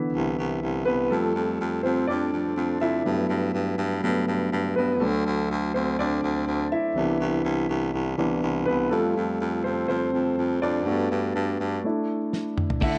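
A straight 4/4 pulse at 123 BPM carries this hopeful, anthemic piano-driven pop passage, cut from a longer piece. A baby grand piano, open and long-sustaining, leads up front over a Cmaj7, Fadd9, Gmaj7 and D progression, while a bright baritone saxophone with vibrato holds down the bass line beneath it. A damped 70s drum kit, with fat snare and dark cymbals, enters with a fill at 12.3 seconds, and a twangy, clean twelve-string electric guitar with spring reverb joins at 12.8 seconds, all inside a dark, roomy studio sound.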